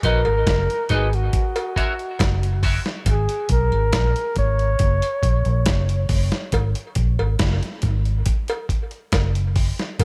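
A breathy, whispered flugelhorn carries the dub echo–soaked melody over a dark, foam-muted bass and a gritty, thumpy sampler-style drum kit in this heavy, meditative dub reggae excerpt, with a twangy clean electric guitar heard only until 2.9 seconds, a band-limited cowbell from 0.2 seconds, and a filter sweep running through the first 6.5 seconds of a dry mix.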